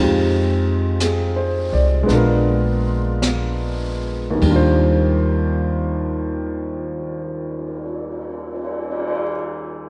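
Swung eighths in a lazy 4/4 ease into this late-night, romantic jazz ballad fragment, with the pulse slowing through the opening bars as a Fm7 and a Bb7b9 settle onto an Ebmaj13 at 4.4 seconds. A clear, smooth upright piano with a vintage character and long sustain sits up front alongside a woody, dark pizzicato upright bass. A distant brush kit joins at 1.0 seconds, with a high-tuned snare, boomy kick, dark cymbals and a rolled-off top, all bathed in a moderate echo-chamber reverb before the piano rings out to 9.9 seconds.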